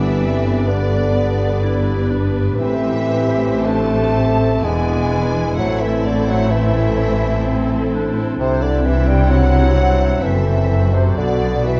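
Classical slow romantic movement for symphony orchestra in 3/4 at 54-67 BPM with rubato, serene and lyrical, where a lush, focused violin section carries the melody over airy flutes, a clear clarinet and a background violin section with portamento as second lines, a present bassoon and expressive violas in accompaniment, mellow French horn chords, very quiet ringing harp arpeggios, a cello section and an up-front, even double bass section on the bass, and soft round timpani heard only until 1.1 s, all set in light reverb with a dark production through a harmony moving from G to Bm.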